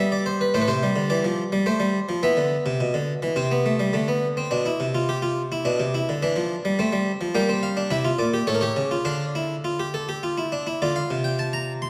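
A solo harpsichord opens this solemn, contemplative baroque-style three-part fugue, its single set of strings giving a round, full, plucked Flemish-style tone that sits close and up front, spanning A2 to C6. Moving at 105 BPM in a straight 3/4, the music begins in A minor, shifts toward D minor from 7.3 s, and is tuned to A4 = 438 Hz. A reverberant concert hall surrounds the playing, and a layer of vinyl crackle adds an aged patina to this short section cut from a longer piece.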